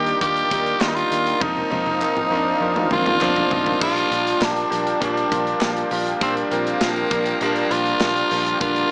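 Nostalgic and uplifting, this short cut from a 1980s-style pop track puts a raspy, gritty tenor saxophone up front with vibrato over a brilliant, polished concert grand piano, while a smooth, warbling analog pad with chorus sits in the background and a dark, round muted electric bass anchors the low end. A modern studio drum kit with a tight kick and tambourine plays a fill from 1.4 to 3.8 seconds, crisp group handclaps sit very quietly in the mix, and a double-tracked distorted electric guitar slips in faintly at 3.8 seconds as the chords move from Ebmaj7 through F7sus4 to Bb6. The whole recording has a light small-room reverb and a small-speaker character.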